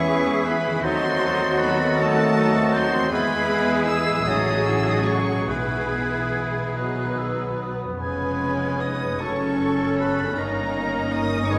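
Classical slow romantic movement in E major, lyrical and serene, at 47-54 BPM in a rubato 6/8, where a rich, smooth violin section carries the melody over a clear, intense second violin line, airy flute, close clarinet, distant oboe, focused violas, a roomy bassoon, mellow French horns and very quiet trombones in sustained chords, a ringing fingerpicked harp in arpeggios, tight, dark trumpet stabs, a clear cello section and an expressive double bass section on the bass, while hard-mallet timpani sound only from 5.5 to 6.7 seconds, all set in the wet reverb of a concert hall.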